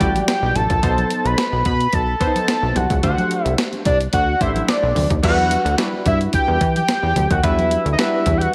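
Early-eighties boogie funk with a slick, funky mood, moving at a straight, steady groove in this short excerpt cut from a longer piece. A fat analog lead carries the melody up front, its detuned sawtooth and square-wave tone thickened by a sub octave and a wave-folded edge, yet it stays mellow with vibrato. Beneath it, a punchy, plucky analog bass with a filter pluck and decaying notes sits forward in the mix, while a funky polysynth comp adds detuned sawtooth chords with a filter sweep and chorus. A clean 12-bit digital drum machine with a thumpy kick, medium-tuned snare, hi-hat and crash has a sampler-style, tape-warm character, and very quiet, bright acoustic congas played with soft hands enter at 0.2 seconds. Lush hall reverb soaks the whole mix in a dreamy haze as the harmony moves from Em9 through B7b9 and D7sus4, returning to Em9 at 5.2 seconds when a new section begins.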